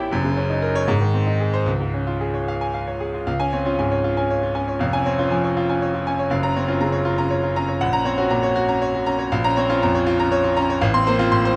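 Captured with close, detailed microphones and a light reverb, a solo grand piano rings out up front with a brilliant, smooth, vintage tone and long sustain across a range from F1 to C6. This stormy, passionate fragment of a virtuoso classical piano study moves in a flexible rubato 6/8, opening on Ebm7/Gb and Ab before settling on Db. At 3.3 seconds it shifts into a new section whose harmony travels through Gbmaj7 and Bbm to close on F/A.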